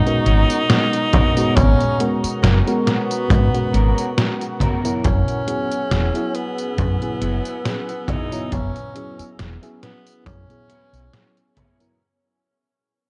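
A bright tenor saxophone leads this nostalgic, woozy vaporwave excerpt, playing a jazz-style solo melody with vibrato, a soft attack and scooped notes, trailed by tape echo. It moves at a slow 69 BPM in 4/4 with a light swing on the sixteenths, over a G#m11 chord that gives way to F#9sus4 at 5.0 seconds. Beneath it, a mellow FM electric piano with a faint noise layer and subtle chorus plays round, decaying accompaniment, while a warbling, detuned tape-like pad holds sustained chords in the background, its slow attack, long release and 12-bit sampler grit adding a lo-fi haze. A dark, slightly broken-up electric guitar picks a riff further back through ensemble chorus and analog delay, and a round, amped fingered electric bass sits up front. The detuned 8-bit drum machine supplies hi-hat, a fat snare and tambourine with gated reverb, joined at 1.1 seconds by a boomy, saturated acoustic kick in a small room. 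The whole piece carries a cassette-tape dullness in its upper end and begins to fade out at 2.7 seconds.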